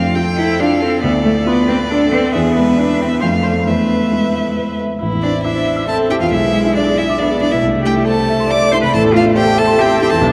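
A quick, stormy classical-period piano quartet movement in A minor at 138 BPM in 3/4, cut from a longer piece, where a focused, bowed solo violin with vibrato carries the restless melody over a rich cello second line, a smooth, even viola accompaniment and a dark, mellow grand piano sitting up front with short sustain, the harmony settling onto A minor at 5.0 seconds, all heard in a vast, echoing cathedral-like space with vinyl crackle.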